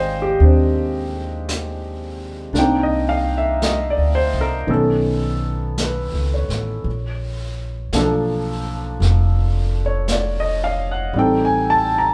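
A wistful, melancholic jazz ballad opens with an intimate concert grand piano, its action noise audible and its bass deep, alongside a woody pizzicato upright bass, both up front, moving through Abmaj7, Cm9, B9 and Bbmaj7 before reaching Am7b5 at 11.1 seconds. A distant, roomy brush kit enters at 0.4 seconds with brushed snare and hi-hat, its top rolled off, under a slow 56 BPM swing in 4/4. The trio sounds like a band playing live in one room, framed by moderate studio reverb, in this short cut from a longer piece.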